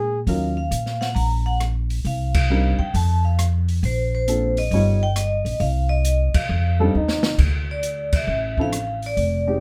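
A swung 4/4 at 135 BPM drives this warm, playful small-group jazz clip, cut from a longer piece in a swing-and-bop vein and tuned to A4 = 435 Hz. The pizzicato upright bass sits up front with a woody, thumpy steel-string tone, beside a slightly detuned, boxy upright piano whose short-sustained chords shade the harmony from Ebm7 through Cm9, Bbmaj9 and G7alt. From 0.3 seconds the vibraphone carries the melody with medium hard mallets and a medium motor vibrato, its ringing, bright, metallic voice up front. The open acoustic drum kit supports it with dark cymbals, hi-hat, rim clicks, a medium-tuned snare and a boomy kick, and the band hits shared accents along the way. The trombone offers a mellow, scooped second line with light vibrato, returning at 6.8 seconds as a drum fill leads into a new section at 7.4 seconds that settles on Dmadd9. A moderate studio reverb gives the group a modest sense of room.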